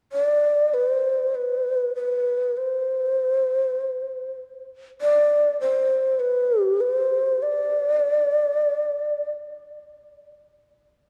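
A close-miked, up-front bamboo shakuhachi plays a calm, austere traditional Japanese melody in free rubato time from 0.1 to 9.3 seconds, its breathy, hollow tone marked by a crisp chiff and vibrato, all set within a long church reverb and dark production in this fragment of a longer piece.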